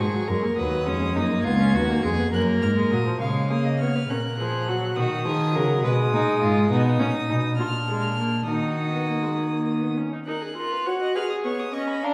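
A nasal, gut-string cello sits up front beneath a rich viola, a lightly vibrato second violin and a reedy period-style first violin high above in this driving, serious baroque-style fugue for string quartet in 6/8, cut from a longer piece, with the cello stopping at 9.9 s while the other three carry on to 12.1 s in a reverberant recital hall heard from further back.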